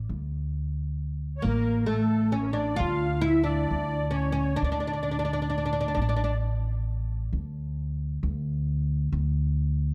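A straight 10/8 pulse carries this soulful, hypnotic Arabic maqam ensemble fragment, where a thumpy pizzicato upright bass sits up front from 0.0 seconds, joined at 1.4 seconds by a deep, woody, fretless oud playing the melody on plectrum-plucked double strings and a softer, reedy musette accordion shimmering on a second line above it, both falling away by 6.4 seconds while the bass continues, within a dark production touched by light reverb.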